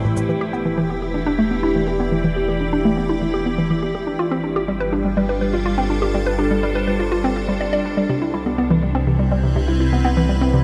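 A hollow, detuned square pluck with chorus and tape echo riffs up front over a bright, morphing wavetable pad with phaser and a deep, round sub bass, all starting together in this mysterious, hypnotic ambient passage at 123 BPM, moving through Em7, G7sus4 and Cmaj7 inside a vast cathedral reverb.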